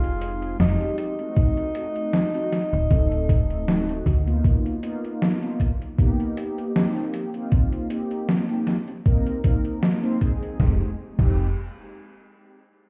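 A breathy alto saxophone with tape echo sings a short, whispered line over dark, chorused synth brass, a snappy metallic FM bass and an overdriven, gritty gated 80s drum machine, joined at 1.4 s by a thumpy electronic kick in this melancholic, hazy 78 BPM vaporwave fragment moving from Fm7 through D7b9, G7alt and Cm7, all heard muffled as if through a club wall on cassette.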